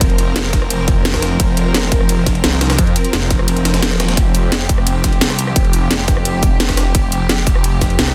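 A straight 4/4 groove at 173 BPM drives this dark, mechanical and futuristic piece of technical drum and bass, with a punchy, overdriven electronic kick that drops out between 3.5 and 4.2 seconds, an up-front drum kit of cracking snare, bright hats, rim click and shaker, and a gritty, pitched-up, sampler-style kit of ride and snare sitting in the background. Underneath, a swirling, thick, detuned sawtooth bass with phaser and overdrive pumps with sidechain compression, while a lush, bowed symphonic string section holds smooth sustained chords over an F5 harmony. The sound is dry, dense and heavily limited, cut from a longer piece.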